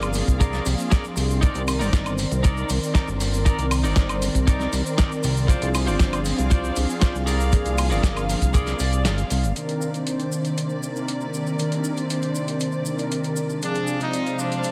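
A fat, saturated analog bass sits up front in this groovy, sleek nu-disco excerpt, pumping under a tight, dry kick and a gritty sampler-style kit with hi-hat, shaker, snare and woodblock, while a tube shaker ticks in the background. Mellow synth brass with chorus and delay and a soft, bowed string section hold the chords, a twangy guitar at the edge of break-up plays a riff, and a filter sweep on an analog polysynth runs through the first 9.6 seconds, joined by a clean guitar fill at 8.5 seconds. The kick drops out at 9.1 seconds, the bass and riff stop soon after, and a bright trumpet section enters at 13.6 seconds, all within a heavily compressed radio sound and a small room.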